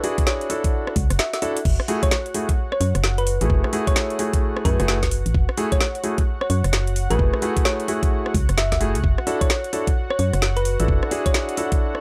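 Soulful and skippy, this excerpt of two-step UK garage at 130 BPM in F# minor swings over a dry, gritty mix, where an overdriven, knocking kick (briefly dropping out between 1.2 and 1.7 seconds) and a layered kit of woody snare, metallic hats, rim clicks and crash drive beneath up-front grand piano stabs, a hollow, dark, organ-like FM bass, a round, tine-like thumb-piano synth pluck carrying the melody, and a smooth, warbling vintage pad that pumps softly in the background through chords moving from E9sus4 to F#m9.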